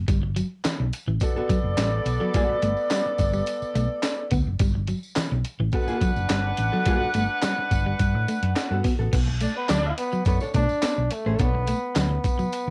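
Funk at 106 BPM with a hypnotic, cool mood, cut from a longer piece and recorded at home on cassette in a small room, where a round, dark hollow-body bass and a gritty breakbeat sampler-style kit with thumpy kick, high-tuned snare, hi-hat, handclaps and crash sit up front, a twangy guitar at the edge of break-up plays a riff, a jingly tambourine stays in the background, a mellow horn section carries a second line from 1.2 to 9.9 seconds, a clean archtop guitar with plate reverb adds accompaniment, the harmony moves from Gmaj9 to Bm9 at 9.1 seconds, and a clear trombone takes the melody at 10.0 seconds.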